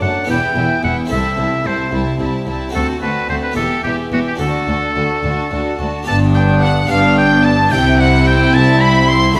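A wet recital-hall reverb surrounds this lively, brilliant excerpt from a baroque-style concerto movement in G major, moving in a straight 6/8 at 73 BPM, where a bright, present oboe leads the melody up front alongside a close, gut-strung violin section, while a second violin line with a smooth top, a dark viola section in the background, a full, plucked harpsichord, a rich double bass section and a distant cello section fill out the harmony and bass, shifting from Em toward D before arriving on G at 6.1 seconds and moving to C.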